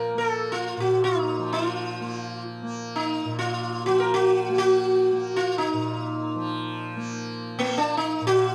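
In free time, this meditative, devotional passage of Hindustani classical music, cut from a longer piece, places a plectrum-plucked sitar up front, its buzzing tone ringing with sympathetic strings between Bb3 and Bb4, over a softer, bright, shimmering tanpura drone, captured with close, detailed microphones and a light reverb.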